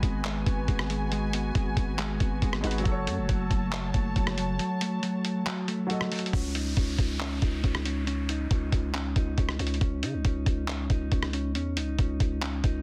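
A half-time trap beat at 138 BPM rides on a compressed, pitched-down lo-fi sampler-style kit of thumpy kick, handclaps, hi-hat and rim click, with softly clipped snare and the kick dropping out from 4.6 to 6.3 seconds, while a growling, buzzy 808-style bass sits up front. Over G#m7 and F#m, a clear concert grand piano plays accompaniment and a veiled, con sordino string section holds bowed chords with light vibrato until 6.3 seconds, and a dark, clean electric guitar keeps up fingered arpeggios through a delay. The harmony then moves to C#sus2 as an electronic downlifter passes through the digital ambience, leaving a melancholic, eerie mood in this dense, heavily limited hip hop fragment cut from a longer piece.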